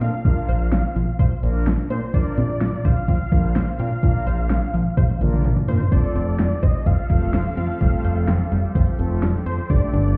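Heard muffled as if through a wall with a stony room tail, this upbeat, nostalgic synth-pop clip at 127 BPM in Bb major sets a thick, detuned unison lead with vibrato and tape echo over mellow, brassy synth chords, a bright, phased analog pluck playing arpeggios in the background, and a fat, saturated analog bass up front, all driven by an overdriven pop drum kit with a knocking kick that plays a fill at 5.0 seconds before a resonant, evolving pad enters at 5.9 seconds as the harmony moves from Bbadd9 to Fadd9.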